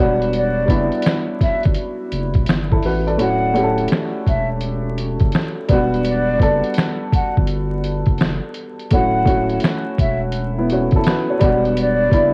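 A slightly detuned, woody upright piano and a deep, saturated sine sub bass open this melancholic, nostalgic lo-fi hip hop excerpt at 84 BPM in E dorian, soon joined by a muffled, pitched-down sampler-style kit of finger snaps, hi-hat, medium-tuned snare and a thumpy kick that drops out from 3.2 to 3.9 s, all swung on the 16ths, and at 0.4 s by a breathy, close-miked, unsteady flute melody, with piano and flute both low-pass filtered and run through cassette tape as Em9 alternates with Dmaj7 under light reverb and vinyl crackle.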